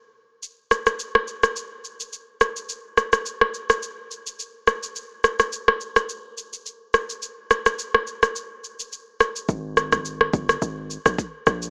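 A deep, up-front electronic afro-pop drum kit of kick drum, rim click and shaker drives this hypnotic, mellow afrobeats excerpt at 106 BPM in 4/4 with a light 16th-note swing, entering at 0.4 seconds after a brief break, and its kick drops out between 7.2 and 9.5 seconds. At 9.5 seconds a hard-hitting 808-style bass joins, punchy and heavy with a sine tone, a noise layer, a fast attack and a decaying tail, moving between G1 and Bb1. The mix carries light reverb and a small-speaker character, and the piece is cut from a longer recording.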